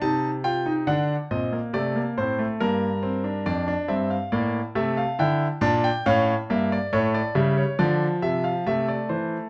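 Stately and elegant, this short cut from a longer baroque-style three-part fugue for solo grand piano moves at 69 BPM in 3/4 with a straight feel, its clear, smooth, vintage-toned concert grand sitting up front with a deep bass as it passes through chords from Am7b5/C and D7 to Dm before closing on Am/C, all set in a moderate stone room reverb and captured by close, detailed microphones.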